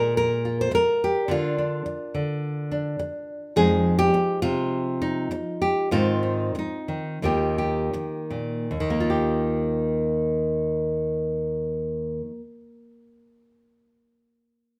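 In a straight 4/4 that moves between 76 and 106 BPM and slows from 3.6 to 8.7 seconds, a solo fingerpicked nylon-string guitar plays a peaceful folk passage in Eb major, tuned to A4 = 441 Hz and cut from a longer piece. Its deep, full-bodied classical tone sits up front, spans Eb2 to C5, and is surrounded by a moderate large-studio reverb. The harmony moves from a rootless Ebsus2 through a brief chordless stretch, then Fm7 and Ab, before settling on Ebadd9 at 7.2 seconds, with a new section beginning at 8.7 seconds.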